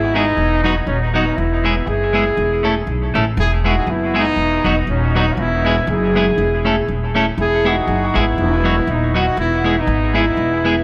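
A horn section with light vibrato carries the melody from the start, up front yet roomy, while a woody, thumpy upright bass in gut-string pizzicato holds the low end in this joyful, upbeat ska piece at 120 BPM in E major, with a gentle swing on the eighths. A clean, scooped semi-hollow guitar enters at 0.1 s with picked accompaniment, and both the horns and the guitar carry a dub echo. The chords cycle over an E pedal between B/E, E and A/E, all set in a moderately large studio reverb, and this short cut from a longer piece runs to 10.8 s.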